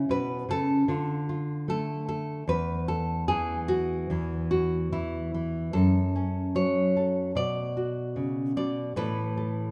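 A lush scoring-stage reverb with a 1.8-second tail surrounds a single up-front nylon-string guitar, its full-bodied, deep classical tone catching the occasional finger squeak. This peaceful, pastoral folk fragment, cut from a longer piece, is fingerpicked in a straight 4/4 across a range from E2 to D5 for about 9.7 seconds. The harmony drifts from C#7(no3) and Dm through a chordless stretch to F#m and Bm, coming to rest on Asus2 at 8.9 seconds.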